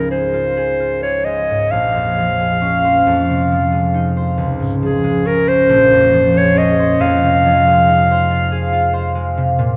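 Pastoral and luminous, this passage from a longer impressionist classical duo sways in a rubato 6/8 with uneven beats, as a clear, up-front clarinet sings the solo melody from 0.0 s to 9.6 s over a bright, ringing, fingerpicked concert harp that carries the accompaniment through Dbmaj9, Bbm9 and Fm7 harmonies until 9.8 s, both parts bathed in the long, wet reverb of a vast, echoing cathedral.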